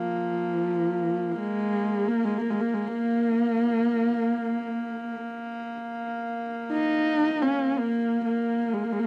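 Solemn and windswept, this short cut from a longer piece of Mongolian folk music unfolds in free time on two horsehead fiddles. One player draws out a dark, husky melody up front with vibrato and sliding portamento, while a second, clearer and more biting fiddle holds an earthy drone beneath it throughout the 9.1 seconds. The home cassette recording lends the bowed horsehair strings a tape-coloured character, with the melody fiddle sitting close, all set in a wet studio reverb.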